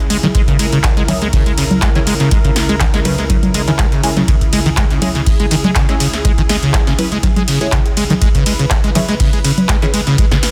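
A squelchy, resonant sawtooth acid bass riff with a filter sweep, tube saturation, chorus and delay drives this raw, trippy acid house excerpt in C# dorian at 122 BPM, pumping against a deep, dry electronic kick up front and a punchy electro drum machine with metallic hats, congas, handclaps, shaker and ride. A smooth, detuned analog pad holds a sustained C#m chord throughout, while a nasal, muted dub chord stab with phaser, lush chorus and a moving notch plucks in from 1.1 s to 9.9 s. Underneath, a gritty, overdriven sampler-style drum kit sits very quiet in a dense, heavily limited modern master with digital ambience.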